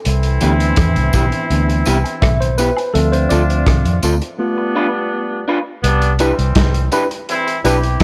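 A worn, slightly out-of-tune tine electric piano opens this short cut from a longer lovers rock reggae piece at 83 BPM in C major, taking a lightly overdriven solo with dub echo through to 5.8 seconds, including a break from 4.4 seconds, over a sweet, romantic Cmaj7, Dm7 and G7 progression. Beneath it, a dark, round, foam-muted fingered bass and a muffled, lo-fi vintage drum kit with tight kick, rim click and hi-hat sit up front, while a loose horn section with vibrato carries a second line. A slightly broken-up picked electric guitar adds stabs, close and dry tambourine and woodblock fill in the percussion, and light reverb gives everything a small-room feel.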